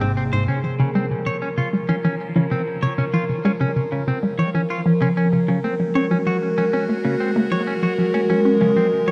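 A bright, morphing wavetable pad, a clean, twangy electric guitar arpeggio and a juicy, squelchy blip pluck riff open this expansive, luminous ambient excerpt at 96 BPM in Db major, with a fat, saturated analog bass heard very quietly only until 0.5 seconds. A filter sweep runs from there to the end while the up-front, phased pad holds sustained chords moving from Db6 to Gbadd9 at 5.5 seconds. The guitar and the chorused pluck both carry tape echo, and a moderate plate reverb gives the dark production its glowing depth.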